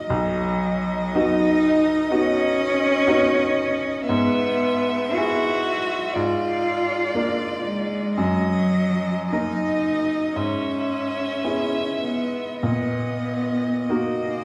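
Melancholic and elegiac, this slow romantic movement for piano trio unfolds with a rubato feel, a short span cut from a longer piece. A bowed violin carries the melody in a narrow high range, its tone warm and expressive, with vibrato, soft attacks and gliding portamento. Beneath it, a rich, focused cello enters at 0.1 s with a second line, sung with vibrato and placed up front. The baby grand piano sounds bright, brilliant and open as it supplies the accompaniment, reaching down into deep bass notes and also sitting close. The harmony drifts through B, E over G#, Bb7 over Ab and E-flat minor chords, and the whole trio is heard from further back in a recital hall whose wet reverb lingers around the players.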